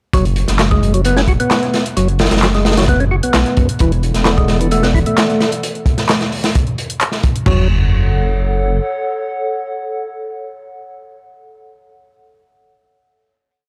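Breakbeat at 131 BPM in F# minor, this short, complete piece has an energetic, swaggering mood over a straight 4/4 pulse. A crunchy, saturated drum break leads up front, with a tight kick, medium-tuned snare, dark cymbals, hi-hat, crash and toms, looped with edits, while a punchy analog drum machine adds a tape-warm layer of closed hat and handclaps. Beneath it, a deep, rumbling detuned saw bass carries a dub-style line with a beating, sustained tone, and a fat, lightly overdriven tonewheel organ repeats a 16-step riff with percussive third-harmonic attack, vibrato, slow rotary speaker, tube saturation and analog delay. Harmony moves from F#sus24 to E9sus4, and at 4.1 seconds a warbling, nostalgic lo-fi pad fades in with chorus, built-in reverb, 12-bit sampler grit and sidechain pumping. The drop gives way at 7.5 seconds to a final F#m chord carried by the pad as the bass rings on briefly, all set in a dry, gritty hardware recording with light reverb.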